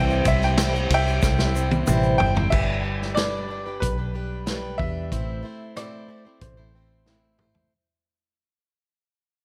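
Open-road and warm, this brief cut from a longer folk rock and heartland rock piece opens on a clear, worn grand piano melody with short sustain and digital delay, together with a boxy picked swing-style acoustic guitar and a foam-muted fingered electric bass up front, soon followed by a grainy egg shaker in the background until 2.1 seconds and a punchy vintage drum kit with dark cymbals whose fills arrive near 1.2 and 7.1 seconds, all in light reverb as chords move from C to G to Am and the sound fades out from 2.5 seconds.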